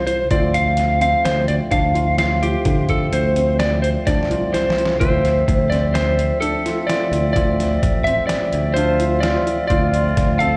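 Progressive instrumental band music in 5/4 at 128 BPM, this driving, intricate passage in D minor opens on Dm7, with a slightly broken-up lead guitar carrying the melody through slapback and tape echo over a growly, up-front picked electric bass and a gritty, pitched-down trip hop sampler-style kit with a thumpy kick. A fat tonewheel organ with key click and a stopped rotary speaker adds accompaniment, while a felt-muted upright piano plays soft arpeggios in the background, its action noise audible, and a drum fill from 4.1 to 5.0 s leads into the next section. At 8.7 s a clear flugelhorn enters with a vibrato-laden second line and scooped notes, all heard as a live gig through the venue's PA with moderate club reverb.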